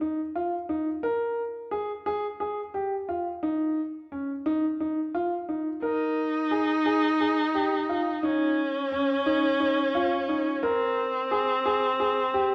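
A boxy, up-front grand piano opens this contemporary chamber piece with arpeggios in the middle register, setting an urgent yet pensive mood in Bb dorian. The music moves in an uneven 7/8 meter at 175 BPM counted in eighths, with a straight feel, and its harmony shifts between a rootless Dbadd9, Bb5, a Dbsus2 and a brief chordless stretch. At 5.8 s a single bowed viola enters with a second line, its tone rich, smooth and even, with vibrato, sitting slightly louder than the piano in the balance. A moderate concert hall reverb surrounds the pair, and the viola has a faintly distant quality. The production is dark and warm, and the 12.5-second passage is cut from a longer work.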